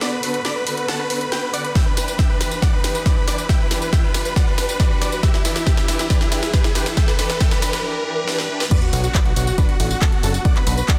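A dense, heavily limited modern master with light reverb carries this euphoric, bittersweet piece of uplifting trance, where a huge, detuned supersaw lead with cassette tape grit and tape echo pumps to the sidechain over floating, bowed string chords. A techno kit with a cracking snare, handclaps, hi-hat, tambourine and crash drives a fill-laden build-up, joined by a heavy, up-front electronic kick at 1.8 seconds while a riser and sub drop sit in the background, before a brief break gives way to the drop at 8.7 seconds. Shortly after, a punchy, funky analog bass with a plucky filter attack arrives up front, pumping beneath the lead and strings.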